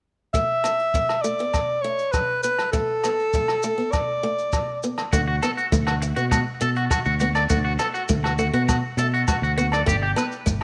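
A bright, vibrato-laden alto saxophone opens this sunny, danceable highlife guitar band excerpt at 101 BPM in D major, singing a pop-style solo up front with tape echo over a woody, boxy archtop guitar picked on old strings. Underneath, a distant, roomy brush drum kit with a boomy kick, hi-hat and rim click sits alongside grainy, saturated maracas and ringing agogo bells tucked in the background. At 5.1 seconds the saxophone has finished and the second section arrives with a round, dark fingered electric bass up front, soft-handed, high-tuned congas kept very quiet, and a twangy electric guitar at the edge of break-up spinning arpeggios through its own tape echo until 10.3 seconds. The harmony rests on D before shifting to G near the end, and light reverb gives the whole band a gentle sense of space.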